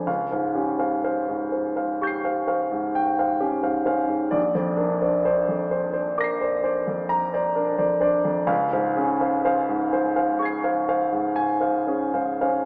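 In a slow, rubato 9/8 lilt of about 38-44 BPM in dotted quarters, this wistful, hazy fragment of impressionist classical piano music features a single up-front grand piano with a clear, present tone and long sustain, ranging from Bb1 to C7 over Dbmaj7#11, Bbadd9 and Dbmaj7 harmonies, set in a moderate concert hall reverb with a small-speaker character.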